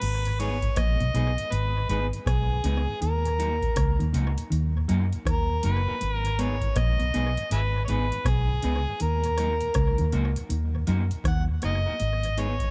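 Light reverb gives this short cut from a longer roots reggae piece a modest sense of space, and the mood is hypnotic and serious over a swung 4/4 groove. An overdriven harmonica carries the melody up front, gritty and amplified, with light vibrato, tongue slaps and a tape echo trailing its lines. Beneath it, a dark, foam-muted fingered bass sits round and forward, while a booming analog drum machine supplies a deep kick, metallic hats, crash cymbal and rim click, also touched by tape echo. A mellow electric guitar plays a clean, fingered riff in the background, and from 0.4 s a twangy, slightly broken-up guitar through a small old amp adds brilliant, picked accompaniment with its own echo. A very quiet, flute-like tonewheel organ joins at 0.3 s with chorus vibrato and a slow rotary speaker, as the harmony rocks between two minor chords.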